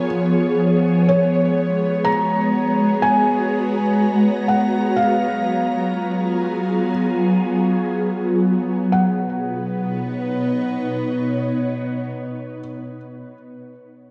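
A slow, straight 4/4 at 62 BPM carries this peaceful, serene ambient piece in B lydian, moving from A#m7 through G#m11 and F#maj9 before settling on Badd9 at 8.9 seconds. Up front, an ethereal, airy pad holds full-bodied, detuned chords through ensemble chorus, phaser and its own reverb, while a string-like, tense bowed drone with vibrato sustains beneath. A soft, felt-muted upright piano plays a mellow, intimate melody through delay with audible action noise, all set in a wet concert hall with a dark, warm production, and the pad lingers alone until 13.0 seconds.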